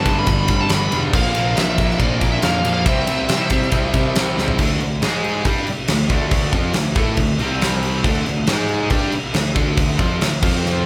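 Swaggering and energetic, this hard rock passage from a longer piece opens with a dark, distorted bluesy lead guitar melody that stops at 4.2 seconds, over background riffs from a double-tracked overdriven electric guitar, a hollow-body semi-hollow guitar and a bright, tight distorted guitar, while a round, punchy fuzz bass and a huge, up-front arena drum kit with a fat snare, punchy kick and bright cymbals drive the band with fills at 4.4 and 10.6 seconds, all captured playing live in one room with light reverb.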